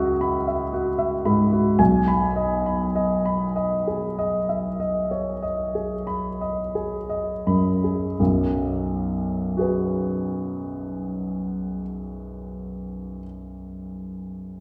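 Impressionist classical solo piano in B major, serene and hazy, this excerpt from a longer piece moves in a rubato 5/4 at roughly 41-59 BPM, its present, up-front grand piano ringing with long sustain across a range from B1 to B5 inside a wet recital hall reverb, slowing through its opening 8.2 seconds as C#m11 gives way to B6 before a second section settles on B5.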